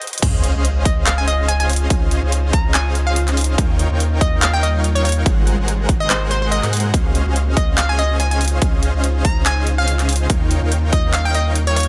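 Dry and tight, this lush, euphoric future bass drop at 143 BPM in half-time, cut from a longer piece, hits at 0.2 seconds with a very quiet sub drop, a deep saturated sub bass and a punchy overdriven kick up front, while a huge detuned supersaw riff, a hollow, bouncy square pluck melody with tape echo and cassette-tape coloring, a driven big-room kit of crash, handclaps and hi-hat, and a shimmering, 12-bit-tinged pad in the background move over Dbmaj9, Eb9 and Ab9 chords in Db major, with the bass, supersaw, pluck and pad pumping to the sidechain.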